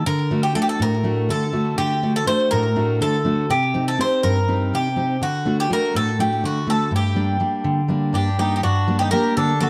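A bright, metallic lead bouzouki with a slapback echo and a dark, full-bodied fingerpicked steel-string acoustic guitar open this driving, dramatic Greek folk excerpt in 7/8 at 245 BPM in G harmonic minor, moving through D, Cm and Gm, with a softer, warm second bouzouki entering at 8.1 seconds beneath them, all captured dry and close in crisp detail.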